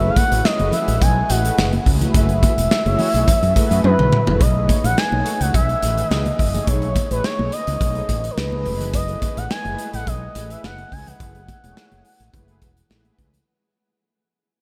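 An expressive, up-front portamento synth lead carries the melody with a smooth sawtooth glide, chorus and delay, floating over detuned, brassy synth brass with a filter sweep in this slick, late-night early-eighties boogie funk at 106 BPM in F# dorian. A round, dark fretless electric bass anchors the F#m11 and B13 changes, while a punchy modern studio drum kit with a pumping room sound drives the groove and very quiet, damped congas sit close underneath. A drum fill at 3.8 seconds leads into the second section, which fades out from 4.4 seconds, the mix soaked in huge, dreamy reverb.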